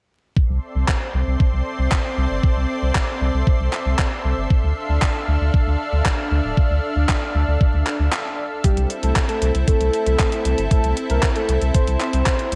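Italo disco with a nostalgic, danceable feel, this excerpt from a longer piece opens at 0.4 seconds with a lush, detuned sawtooth pad holding chorused chords over a thumpy, up-front electronic kick. A deep, round analog bass joins at 0.5 seconds, and a clean 12-bit drum machine follows at 0.9 seconds, supplying handclaps and hi-hat treated with gated reverb, all under a layer of vinyl crackle and light reverb. After a short break, a soft octave-layered synth lead with vibrato, chorus and digital delay enters at 8.6 seconds to carry the melody through the final section.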